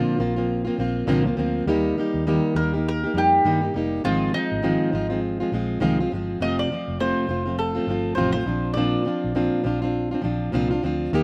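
Dry, with barely any reverb and the open-air clarity of an outdoor take, this short cut from a longer acoustic pop piece feels carefree and sunny, with a gentle swing on the sixteenths. An up-front, mellow mandolin with double strings and a slapback echo carries the melody until 10.5 seconds, over a full-bodied, fingerpicked plugged-in jumbo steel-string guitar. A dark, foam-muted vintage electric bass with a round, amped tone enters at 0.2 seconds, as the chords move from Bbadd9 through Eb, Ab6 and F before returning to Bbadd9.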